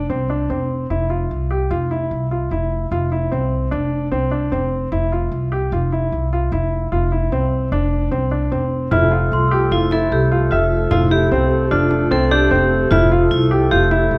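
A moderate recital hall reverb gives this brief excerpt of contemporary chamber music an open, resonant setting, with a shimmering, playful mood and an uneven five-beat metre. At the start, a clear, up-front grand piano spins arpeggios in the middle register over a woody, thumpy pizzicato upright bass with steel strings, also placed close to the listener. At 8.9 seconds the texture fills out: a metallic, ringing vibraphone struck with hard mallets adds a second line, its fast motor vibrato and vintage, band-limited tone setting it apart. At the same moment a warm woodwind section holds soft-attacked sustained chords with light vibrato, sitting distant and roomy in the background, while a small, bright frame drum played with soft hands sounds close, dry and very quiet. From 9.3 seconds a large celesta with hard felt hammers scatters delicate, bell-like, sweet tones high above the ensemble, full yet tucked into the background.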